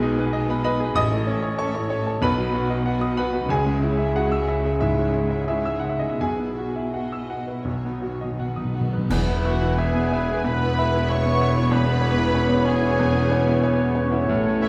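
A clear, up-front baby grand piano carries the melody through this passionate, lyrical excerpt from a romantic movement for piano and orchestra in E major, moving in 4/4 with a rubato feel between 81 and 98 BPM. Behind it, muted violin sections with a dark, veiled con sordino colour carry a quiet melody and second line, while violas, a lush cello section and double basses supply accompaniment and bass from the background. At 6.2 seconds, soft-mallet timpani with a round tone enter alongside bright clash cymbals, a cymbal swell and concert bass drum, and a timpani fill at 7.7 seconds leads into a full band accent at 9.1 seconds as the harmony settles on E. From there the winds and brass join: a dark, distant clarinet, a bassoon, an oboe and a pure, straight-toned flute section add second lines and accompaniment, mellow French horns hold sustained chords, trumpets add soft-edged stabs, and a tuba deepens the bass. 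The whole ensemble sits in a reverberant recital hall that lends the sound a generous, romantic glow.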